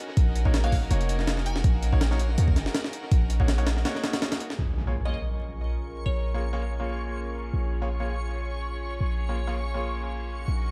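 Drum and bass with a jungle edge at 163 BPM in Bb minor, raw and nostalgic, this excerpt opens as a rich chamber string section holds soft, floating chords through a low-pass filter, soon joined by a gritty, pitched-up sampler drum kit with a thumpy kick and dub echo driving over a deep, boomy 808-style bass, while a bright concert grand piano adds stabs roughened by vintage 12-bit grit. The drums drop out at 4.6 seconds on a background electronic impact as the strings move through a filter sweep, a glassy wavetable pluck returns with chorused, tape-worn melody lines in the background, and a reversed, dreamy swelling texture swells in from 5.3 seconds. The echo-heavy mix carries light reverb and vinyl crackle.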